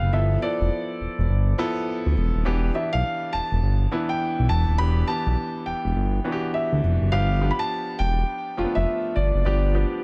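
A studio reverb frames this slick, bouncy new jack swing excerpt, with a swung sixteenth-note feel throughout. A warm concert grand piano carries the high melody through a delay, while a clear, intimate grand piano plays accompaniment with its action noise audible and its long sustain up front. Beneath them, a smooth synth bass blends sawtooth, square and triangle tones with ring modulation as the harmony moves from G13 to Em7, before the passage shifts to G7 at 7.1 seconds.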